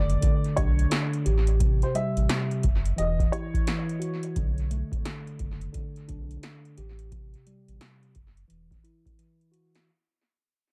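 A dark, woody upright piano carries the melody at the start of this reflective, gritty boom-bap hip-hop excerpt, its worn, slightly detuned and boxy tone full of audible action noise and tape echo before it drops out at 4.3 seconds. Beneath it, a mellow tine electric piano plays the chords through its built-in speakers with a clean, cassette-tinged character, moving through Bm7, Am7 and F#5 before returning to Bm7 and Am7 and settling on Esus2. A deep, full sub bass with an added octave sits up front with a fast attack and sustained sine-and-triangle body until 8.8 seconds. An analog electro drum machine drives a swung groove with a deep kick, punchy snare and metallic hats, sounding re-recorded in a small room, and it closes with a drum fill from 9.2 seconds. The echo-heavy mix otherwise carries little reverb and fades out across its whole length, as a fragment cut from a longer piece.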